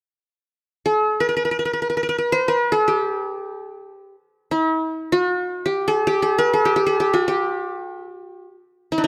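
A solo qanun enters at 0.9 seconds and carries this short fragment of an Arabic maqam piece through to its close at 9.1 seconds. It unfolds in free time in maqam huzam on G, tuned to A4 = 441 Hz, with a festive, passionate character. The acoustic qanun is played with fingerpicks, and its triple strings give a bright, bright-edged sparkle as it moves within a compact range from D4+40c to C5-40c. Close, detailed microphones place the instrument up front, and light reverb adds a touch of space around its tone.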